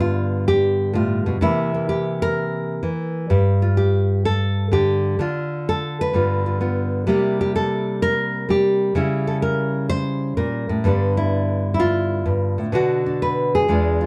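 Dark, warm production with light reverb frames this playful solo jazz excerpt in G mixolydian at 127 BPM with a swung 4/4 feel, where a fingerpicked nylon-string guitar sits up front with a deep classical tone and audible finger squeak, moving through G7 and C7 to a brief chordless moment, then a C#dim7 on its way back to G7 and a closing Bm.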